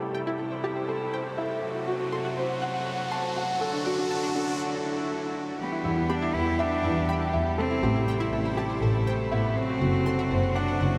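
A straight 4/4 pulse at 121 BPM carries this hypnotic, cinematic piano and strings electronica in E minor, cut from a longer piece, where a felt-muted upright piano plays a soft, intimate riff over a biting, bowed double bass section up front, sustained chords from a clear, airy string quartet, and bright, detuned analog pluck arpeggios set back in the background. An electronic riser and swell build for the first 5.6 seconds, a brief break arrives at 4.6 seconds, and at the drop a rich, nasal solo cello takes up the melody. The dreamy mix is soaked in a huge ambient reverb, with diffuse delay trailing the piano, pluck and cello.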